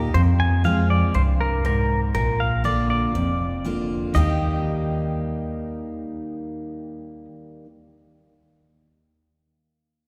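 A picked steel-string acoustic guitar, bright and full-bodied with fresh strings and audible finger squeak, sits up front from the start alongside a woody, dark pizzicato upright bass in this easygoing, down-home excerpt of honky-tonk and classic country at 120 BPM in Eb major. A clean, twangy, compressed electric guitar carries the melody from 0.1 seconds, moving over Fm and Bb before the harmony settles on Eb at 4.1 seconds. The trio rings out in a wet church reverb with a long 3.0-second tail, giving the small group the spacious sound of a large hall.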